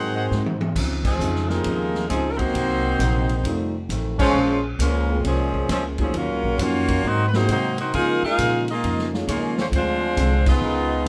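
Dramatic and swinging, this big band jazz fragment puts an edgy, close-miked saxophone section up front on the melody over a soft-attack trombone section's second line, a woody pizzicato upright bass, a clean hollow-body jazz guitar and a punchy acoustic drum kit that opens with a fill at 0.3 seconds, while a boxy upright piano with audible action noise joins at 1.5 seconds, the whole band hitting accents in a large studio room.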